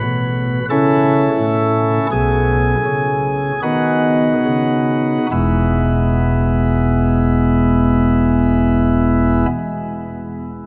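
A chamber organ stands alone at the front, its sparkling flute stops carrying a light, bright chamber voicing with an audible chiff at the start of each note. The piece is a classical chorale in E major, majestic yet serene, moving in 4/4 at a very slow 35-45 BPM with a free, rubato feel. The organ spans from a deep E1 up to B4 and plays from 0.0 to 9.5 seconds. Its harmony moves from A to B and settles on E at 5.3 seconds, where a new section begins after the opening passage gradually slows. A cathedral reverb with a 6.5-second decay surrounds the instrument, adding a vast, lingering tail, and the tuning sits slightly high at A4 = 441 Hz. The recording is cut from a longer piece.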